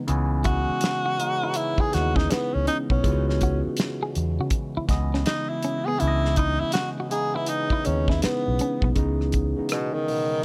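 A clean, compressed electric guitar and a barky tine electric piano, lightly overdriven with phaser, open this late-night, smooth neo-soul R&B piece, joined by a dark, round, foam-muted electric bass and a dry, warm 70s drum kit of kick, snare, rim click and hi-hat in a swung feel, while a breathy, whispered tenor saxophone with vibrato takes an intimate solo from 0.4 seconds, all set close with little reverb.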